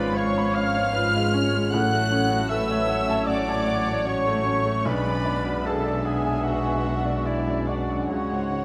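A clear baby grand piano carries the melody in this brooding, passionate romantic movement for piano and orchestra, unfolding in F# minor at a rubato 76 BPM, with a chamber violin section joining the melody high above in an intimate, sul tasto voice. Behind them, an airy, hollow flute section, a clarinet, a cor anglais and a very quiet lower violin line weave second lines, while dark violas supply accompaniment and a tight French horn section holds sustained chords in the background. Woody cellos and soft-edged double basses anchor the harmony as it moves from C#7/G# toward a C# chord at 8.1 seconds, all set in the generous bloom of a scoring stage.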